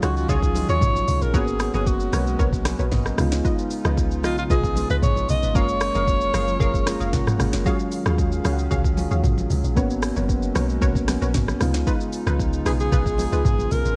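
Amapiano at 114 BPM, soulful and hypnotic, where a breathy, intimate alto saxophone sings the melody up front with light vibrato and scooped notes until 7.4 seconds, then returns at 12.7 seconds over soft, round electric-piano-like synth keys that add a brief fill, a hollow, flute-like pad pumping quietly in the background, punchy detuned chord stabs with delay, a deep, dark log drum bass, a crisp electronic afro-pop drum kit with a sharp snare, and faint vintage congas, all bathed in a worn, warbling cassette-tape ambience in this soulful cut from a longer piece.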